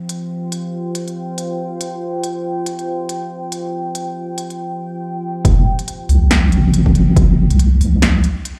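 A large studio reverb from a big sound system in a bare room wraps this brooding, meditative deep dubstep cut, moving at 140 BPM with a swung, half-time feel in F minor. A moody sawtooth ambient pad, thickened with chorus, holds sustained chords under a filter sweep while smooth hi-hats and a punchy snare from a deep house kit tick along. At 5.5 seconds the drop lands, bringing in a saturated, up-front wobble bass of triangle and sine tones alongside a punchy electronic kick.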